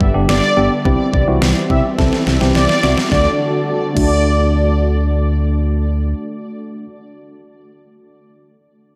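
A punchy, round FM bass sits up front in this short synth-pop excerpt, its dark digital tone decaying under a straight 4/4 pulse at 106 BPM in D mixolydian, tuned to A4 = 439 Hz. A smooth, detuned sawtooth pad with chorus and a low-pass filter holds sustained chords over a G, C and D progression. A bell-like tine electric piano adds clean, bright accompaniment and lingers until 6.9 seconds. Mellow synth brass, detuned and chorused with tape echo, carries a second line from 0.3 seconds. An electronic pop drum kit, overdriven, with a knocking kick, deep snare and crash cymbal, plays a fill and drops out at 4.1 seconds. A filter sweep colours the opening, and a cathedral reverb with a 5.6-second tail soaks the mix in a dreamy, nostalgic, wistful haze.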